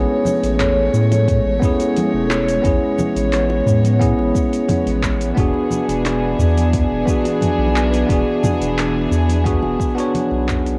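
Sunset chillout with a smooth, blissful mood, this short excerpt moves from Amaj7 to E7 as a bell-like tine electric piano, up front and touched with tape echo, plays over dark, intimate bowed strings with light vibrato and a round, deep analog bass. Congas and bongos sit dry in the background, a deep house kit adds metallic hats, cabasa, handclaps and toms, and an electronic kick enters at 1.3 seconds. Spring reverb and a cassette home-recording character give the mix a tape-softened haze before it fades out from 9.0 seconds.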